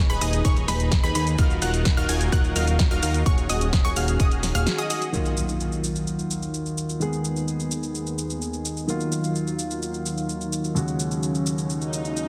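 A dense, heavily limited modern mix with light reverb carries this euphoric, anthemic festival progressive house excerpt in Eb minor at 128 BPM, opening mid-drop with a punchy up-front electronic kick, a house kit of punchy snare, bright hats and shaker, a fat saturated analog bass, detuned supersaw stabs through a low-pass filter and delay, and bright unison pluck arpeggios high above, with the bass and synths riding sidechain pumping. A lush, thick sawtooth pad sustains chords throughout, and at 5.1 seconds the drop gives way to a dark, worn baby grand piano accompaniment with delay, an electronic impact, and a filter sweep on the pad. An electronic swell rises from 11.8 seconds as the chords cycle through Abm/Eb, Ebmadd9 and Dbsus4/Eb.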